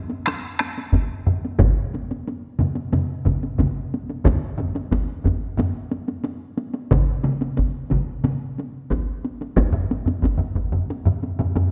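A taiko ensemble struck with hard sticks opens at 0.1 s, close and dry but set lower in the mix than the groups that follow. This is a driving, powerful passage of Japanese traditional taiko drumming, cut from a longer piece and moving at a straight 90 BPM in 4/4. Within the first second, a second ensemble played with heavy sticks joins up front, then a third, also with hard sticks and sitting up front in a small-room sound. A fourth group with heavy sticks adds more close, dry weight until it drops out at 8.4 s. The second ensemble falls silent partway through, then returns at 9.7 s to join the drumming through to the cut. Over the whole recording lies a moderate concert-hall reverb, giving the acoustic hits a sense of space.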